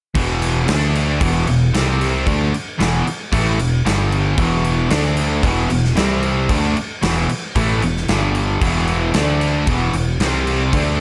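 This hard rock excerpt opens almost at once with two overdriven guitars and a big rock drum kit, the bass and a third guitar joining a fraction later at 0.2 seconds. The mood is menacing and aggressive, with a straight 4/4 feel driven by a punchy kick, a medium-tuned snare and bright crash cymbals, the acoustic kit sitting up front in a big room. The riff circles around an E5 power chord, moving out to D5, C5 and G5 before returning each time, and the guitars play it across the same low-to-middle range. A double-tracked, warm-toned guitar sits in the background, a hollow-body guitar adds a brighter, picked bite, and a very quiet, dark, sludgy guitar thickens the bottom. The fingered electric bass is direct and growly with a modern brightness, and light reverb gives the whole a sense of space until the parts stop at about 11 seconds.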